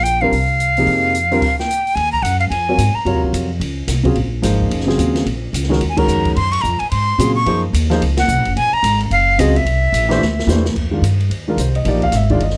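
A breathy, bright flute with vibrato and a crisp, chiffy attack opens this fast, spiritual modal jazz excerpt in Eb dorian at 218 BPM, swinging in 4/4 over a woody, thumpy upright bass, with a drum kit of dark cymbals and a boomy kick and a short-sustained grand piano joining almost at once. The flute sits up front, pauses briefly, and returns at 5.9 seconds on a band accent, while the piano accompanies hypnotic harmony moving from F9sus4 to Ebm11 and later C13. A brief stop near the start and a drum fill ending at 10.8 seconds frame the groove, heard in a moderate club reverb.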